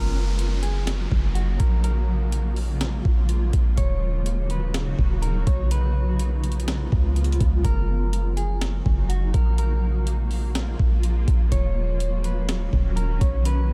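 A half-time 4/4 groove at 124 BPM from a gritty, compressed breakbeat sampler-style drum kit, entering at 0.4 s with a thumpy kick, high-tuned snare and hi-hat, anchors this floating, dreamy atmospheric cloud-rap passage in F# major, cut from a longer piece. A deep, boomy 808-style bass with a noise layer sits up front beneath a blurred, detuned granular cloud pad carrying its own reverb and chorus, while a clean, picked electric guitar melody with delay floats softly on top and an electronic downlifter sounds through the first 3.8 s, all over a chord cycle of F#6, A#m7, D#m7 and C#7 in a dry mix.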